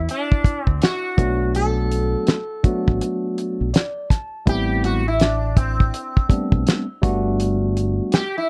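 A cloth-damped, thuddy drum kit sets a swung 82 BPM groove in 4/4, its fat snare, tight kick and hi-hat sitting dry and up front with a rolled-off top in this mellow, cool jazz-hop clip cut from a longer piece in A dorian. A deep, round fingered electric bass holds the low end from the start, dark and direct, under a buzzing, plectrum-plucked sitar whose sympathetic strings give the melody a shimmering edge through plate reverb. At 1.2 seconds, as the harmony moves from D to Bm7, a clean tine electric piano enters, sounding through its built-in speakers and also bathed in plate reverb, and adds a fill from 3.4 seconds. At 4.5 seconds the sitar takes a solo as the harmony shifts to Am9 and then Gmaj9. The production is dark and lightly reverberant, with the drums the most forward element.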